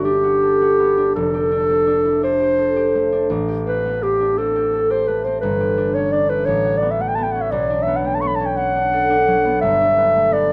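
Pastoral and luminous, this short classical passage, cut from a longer piece, is an impressionist duo for clarinet and harp in 6/8 with a free, rubato feel. The dark-toned clarinet carries the solo melody up front throughout its 10.5 seconds, ranging from G4 up to C#6 in a classical style. Beneath it, the concert harp provides a fingerpicked accompaniment from F1 to A4, its acoustic strings ringing out close and present. The harmony drifts through rich extended chords, opening on Gmaj9 and passing through F69, Am9, A13 and Bm7 before settling on Gmaj7. A light reverb and a dusky, warm production give the whole duo an intimate glow.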